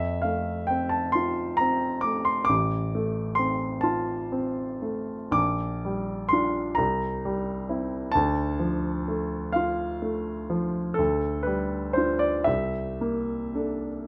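Close, detailed microphones and light reverb place a warm grand piano up front, its notes carrying a short sustain. This is a romantic classical nocturne for solo piano in F major, nostalgic and tender in mood, cut from a longer piece and lasting about 14.1 seconds. The pulse moves slowly in 12/8 at roughly 35-45 BPM counted in dotted quarters, and the rubato gives the phrasing a freely breathing, unhurried feel. The piano spans A1 to D6, moving from F through F/A, Gm7/Bb, C7 and Dm before settling on G5/D and a C13 at 12.5 seconds. That final chord leaves the phrase suspended, as if the passage continues beyond where it stops.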